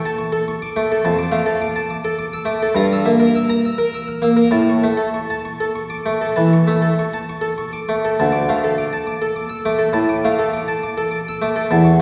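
A solo harpsichord, bright and airy with a plucked, Italian-style voice on a single set of strings, sits up front as it moves through an introspective, solemn baroque-style suite movement in D minor. The 12/8 pulse at 68 BPM feels uneven and rubato, ranging from D2 to F6 over harmonies that pass from A through Dm/F and Edim/G before settling on a D5 at 8.2 seconds. A wet concert hall reverb places the listener further back in the room in this 12-second portion cut from a longer piece.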